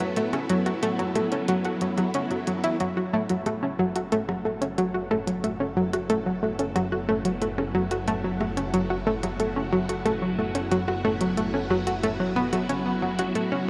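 Clicky electronic hi-hats and percussion blips tick through analog delay at 91 BPM in a straight 4/4, driving this mysterious, expansive stretch of sequencer-driven space music in F# minor, held on an F# minor chord and cut from a longer piece. An up-front, round analog pluck riff with sub-octave weight, chorus and analog delay rides over swirling, warbling string-machine chords steeped in phaser and shimmer reverb, which fade in from 2.8 s as a fat, saturated, nasal analog bass fades in beneath them. At 5.1 s a very quiet, breathy, wind-like noise texture drifts in high above, with the whole mix set in a vast, echoing cathedral space.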